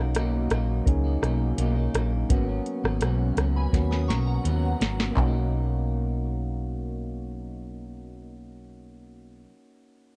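Indie bedroom pop in B major at 84 BPM, this laid-back, hazy excerpt drifts between Bmaj7 and G#m11 over a soft vintage rhythm box with a deep kick, crisp snare, handclaps and metallic hats that plays a fill from 3.7 s and stops at 5.3 s. A round, punchy hollow-body bass sits up front beside a slightly broken-up picked electric guitar with subtle chorus and warbly pitch drift, while mellow electric-piano-like synth keys add cassette-tinged chorus. At 3.6 s a dreamy, detuned FM bell briefly shimmers high above through phaser, lush chorus and tape echo, all within a dry, close 1970s-style studio sound.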